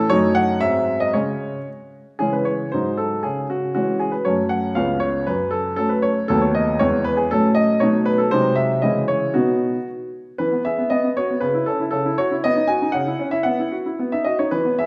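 A clear baby grand piano carries this classical-period sonatina alone, sitting up front with a natural tone and long sustain that rings into a wet recital hall reverb. The mood is cheerful and elegant despite the C# minor key, moving at 118 BPM in a straight 2/4. After a brief opening phrase, the main theme settles in at 2.2 seconds, passing through C#m, F#m and C#7 before turning toward E and B7 and cadencing on C#m. At 10.4 seconds a contrasting section opens on E and B, then moves through a suspended B chord that resolves onto B major. The writing spans from deep bass notes up into the upper middle register, and the passage is cut from a longer piece.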